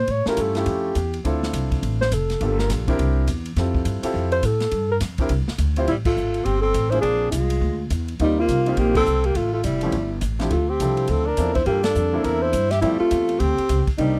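Small-group swing and bop jazz in F major at a brisk 207 BPM, playful and sophisticated, with a dark, vibrato-laden alto saxophone carrying the melody up front, its notes scooped and smooth on top, over a woody, thumpy gut-string upright bass, a short-sustain baby grand piano comping, and a polished, airy drum kit with punchy kick, snare, hi-hat, ride and crash. From 5.9 seconds a breathy, clear tenor saxophone adds a second line while the band hits a series of accents under the changing harmony. The close, dry 1970s-style studio sound keeps this short cut from a longer piece intimate and immediate.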